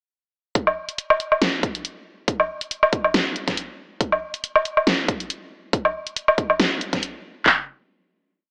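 In this menacing, heavy dubstep piece, a huge snare is layered with closed hi-hat and a low woodblock in an electronic half-time beat that runs until 7.1 seconds. A second kit layer pairs a punchy kick with handclaps, also half-time, and both kit parts sit up front, re-recorded in a small room. The tempo is 139 BPM in 4/4, with a 55% swing on the sixteenths that lends the groove a slight lilt. The whole short piece is essentially a single drop beginning at 0.6 seconds, closing on a final hit at 7.5 seconds. Light reverb and an AM radio coloring give the mix a narrow, boxy character.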